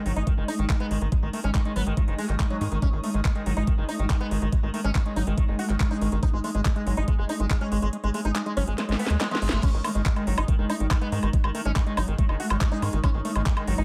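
A swarming, detuned drone and a squelchy, gritty acid bass riff open this intense, driving psychedelic trance excerpt at 141 BPM, soon joined by a buzzing, plucked sitar melody treated with phaser and dub echo, a tight sawtooth sequencer bass, and a garage kit of cracking snare, metallic hats, handclaps and woodblock alongside a knocking, up-front electronic kick, with the drone, acid bass and sitar pumping against the sidechain. The kick drops out at 7.9 seconds as a drum fill and a very quiet reverse cymbal build toward the drop at 9.6 seconds, where the full groove returns in a digital ambience.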